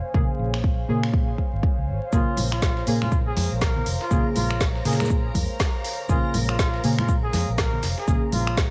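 A veiled, breathy trumpet with a bucket mute enters at 2.1 seconds, playing a mellow jazz-style solo with light vibrato and scooped notes, trailed by dub echo, over a hypnotic deep house groove at 121 BPM in Bb minor resting on a single Bbm7 chord. A deep, up-front electronic kick and a round, punchy, foam-muted electric bass with tube saturation anchor the swung 4/4 pulse, joined by a drum kit with a woody snare, smooth hats and finger snaps, a gritty sampler-style kit in the background, and very quiet, ringing congas. Soft, full-bodied chord stabs with dub echo, a warbling, nostalgic lo-fi pad with phaser and 12-bit grit, and a silky string machine pump against the kick beneath steady vinyl crackle in this excerpt cut from a longer piece.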